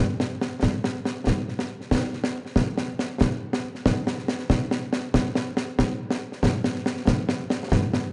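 Stirring and ceremonial, this short Scottish traditional fragment in a straight 6/8 features concert snare drum and concert bass drum, entering at 0.2 s and playing until 8.0 s, sitting close, dry and up front with bright cymbals, all set within a dark production with a light touch of reverb.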